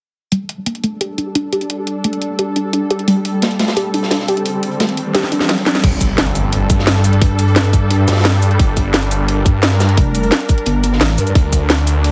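A snarling, detuned sawtooth bass growls up front from the drop at 5.8 seconds in this aggressive, mechanical, dark technical drum and bass cut at 174 BPM in G minor, joined by a tight electronic kick and a pulsing, mellow wobble bass, while a swarming granular drone holds tense chords under a lo-fi, warbling pluck arpeggio with a filter sweep and tape echo, a drum kit with metallic hats and a cracking snare drives throughout, a gritty breakbeat kit sits in the background from 3.1 seconds, and a riser and impact mark the turn into the drop, the whole mix carrying a heavily compressed, radio-like sound.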